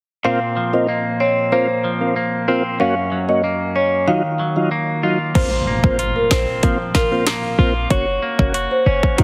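Heavily compressed with a radio-like sheen and light digital reverb, this bouncy, hypnotic dancehall excerpt in Bb minor moves at 94 BPM. A woody marimba with a delay carries the melody over a smooth tonewheel organ with chorus vibrato and slow rotary speaker, while a bright, twangy clean electric guitar plays arpeggios up front. At 5.4 seconds a punchy, tight 808-style bass and an overdriven island pop drum kit, with its sharp snare, metallic hats and rim clicks, join in, and a background electronic impact sounds from 5.5 to 7.9 seconds.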